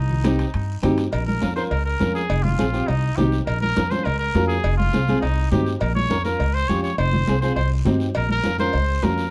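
A clear trumpet with light vibrato carries the pop-style solo melody up front, touched by plate reverb, over a woody, thumpy pizzicato upright bass with gut strings in this driving, danceable cumbia at 205 BPM. A fingerpicked flamenco guitar adds warm accompaniment with audible finger squeak, while soft-handed, thick-skinned congas and ringing metal-shell timbales and cowbell sit in the background, and a raspy guiro sounds close and dry. The harmony cycles through Cm, Bbm and Fm in a dark production with light reverb, and the clip is cut from a longer piece, running to 9.3 seconds.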